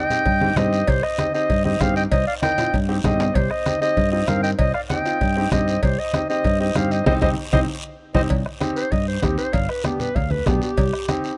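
A warm, classical-style clarinet carries the melody up front while a dark, breathy second clarinet plays a softer jazz-style line in the background until 8.2 s, over a fiery, driving cumbia in C minor at 194 BPM. Woody upright piano, a warm fingered electric bass, bright low-tuned congas, a soft-beaten bombo, raspy guiro, and ringing cowbell and timbales set in the background fill out the groove, with drum fills at 2.4 s and 7.4 s and a band accent from 7.1 s leading into 8.3 s. There, the music shifts to C harmonic minor for a short clarinet solo. The sound is close and dry, and the clip is cut from a longer piece.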